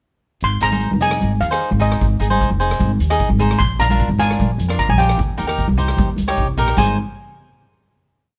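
A shimmering, metallic steel pan, struck with hard rubber sticks and heard close and dry, carries a free-flowing lead melody through this festive, carefree calypso in Ab major at 151 BPM, a whole piece that runs a single verse before settling on a final chord at 6.8 seconds. Beneath it, a woody, thumpy upright bass with gut strings plays a syncopated pizzicato figure up front, while a crisp, picked cavaquinho adds rhythmic triad chords and a street-band drum kit, airy and polished with dark cymbals and a boomy kick, drives a calypso groove. Soft-handed congas with a thick-skinned tone sit in the background with a loose pattern, and the overall sound is close and detailed with little reverb.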